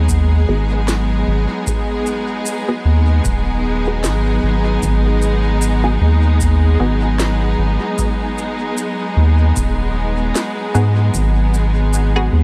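Meditative and deep, this ambient dub excerpt in G# minor moves at 76 BPM with a swung sixteenth feel, as a lush, clear symphonic string section holds a sustained G#m7 chord over an up-front, round and nasal analog bass, while a tape-warm electronic kick drum and a woody electronic snare drum with shaker enter at 0.1 s in small room ambience, with dub echo on the snare and shaker, and a muted sawtooth dub chord stab joins in the background at 0.5 s through phaser, analog chorus and dub echo, the whole piece set within a digital ambience.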